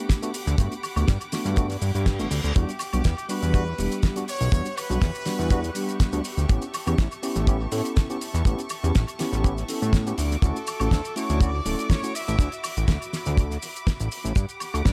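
A clean tine electric piano, with medium tremolo, pumping and tape echo, opens this sensual, sleek nu-disco excerpt at 122 BPM in E dorian alongside smooth, bowed studio strings that also pump with the kick; a dry, tight kick sits up front with a damped 70s drum kit whose fat snare, hi-hat, shaker and woodblock carry tape echo, and a thick, detuned sawtooth analog bass with tube saturation and a filter sweep anchors a lightly swung groove over Gmaj7, Em9, A7 and Dmaj9 chords; an electronic reverse cymbal sounds at 1.8 s, a brilliant trumpet section with vibrato carries the melody from 2.6 s and returns later, and the piano drops out at 12.1 s, all in an echo-heavy mix with light small-room reverb.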